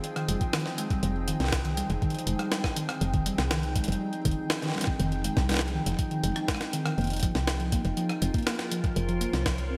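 A bright, 1980s-style digital production bathed in a lush hall reverb carries this intricate, eerie IDM excerpt in straight 4/4. A glassy FM pad holds ethereal chords with ensemble chorus, while a mellow tine electric piano spins arpeggios through vintage 12-bit sampler texture, delay and a filter sweep, and a woody, round FM bass with tube saturation rests beneath. Gritty, pitched-up jungle sampler-style drums (hi-hat, rim click and a medium-tuned snare with delay) sit up front over a thumpy, compressed electronic kick, as the harmony moves from Fm9 to Bbm9/F at 7.0 s.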